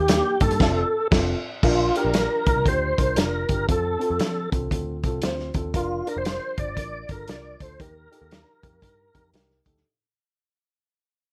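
An overdriven tonewheel organ carries the melody up front with key click, chorus vibrato and a slow rotary swirl, joined from the start by a dark, woody upright piano and a round, foam-muted picked electric bass, while a muffled, lo-fi vintage drum kit with a punchy kick and dark cymbals enters at 0.1 seconds. This uplifting, danceable 1960s-style soul cut moves at an uptempo 117 BPM with a swung 4/4 feel in B-flat major, opening on a band accent between 0.6 and 1.6 seconds. From 1.6 seconds the groove settles onto B-flat, F and E-flat chords under light reverb as it fades out.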